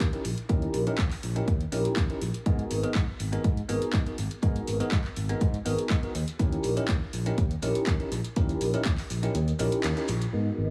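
A straight 4/4 groove at 122 BPM drives this funky filtered disco house excerpt, anchored by an overdriven, punchy electronic kick up front, a tape-warm analog drum machine supplying handclaps and hi-hat, and compressed maracas in the background, with the hats and maracas pumping and the hats, snare and maracas low-pass filtered. A growly fingered electric bass and a bell-like tine electric piano, treated with phaser and vintage 12-bit sampler grit, carry the D#7b9 and G#m9 harmony, both pumping under a filter sweep in a small, nearly dry room. The kick stops at 9.0 seconds, a band accent lands at 9.8, and a lush, very quiet string machine ensemble slips in with sustained chords at 10.3 seconds before the cut.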